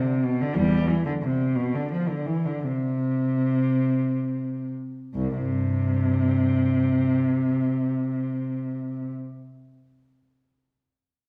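Swaying in a lilting triple-grouped 6/8 with a free, rubato pulse, this is a flowing, dance-like baroque-style suite movement for unaccompanied cello, heard as a short cut from a longer piece. A single bowed cello carries everything alone, staying in its low register with a dark, woody tone and vibrato. The tempo slows through the opening phrase, and a new section begins at 5.2 seconds. The cello sits up front yet has a slightly distant quality, bathed in a wet recital-hall reverb. The overall production is dark and warm, and the cello falls silent at 9.1 seconds.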